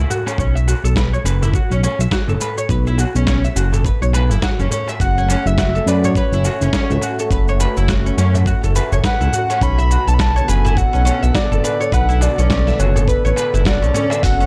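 A swung 4/4 groove at 104 BPM, built from a thumpy, compressed electronic kick and a dusty, gritty sampler-style kit of hi-hat, shaker and snare, with a crisp metal-shell darbuka heard distantly in the background, sets a meditative, mystical organic downtempo mood in F# minor. A woody, plectrum-plucked oud plays filtered arpeggios with tape echo over a smooth, up-front synth bass that pumps with the sidechain, the harmony moving from F#m to Bm7 at 9.6 seconds. At 5.0 seconds a warbling vintage analog pad with chorus and a soft, breathy flute-like synth lead carrying vibrato and tape echo join, all captured in a dry, gritty hardware sound in this fragment of a longer piece.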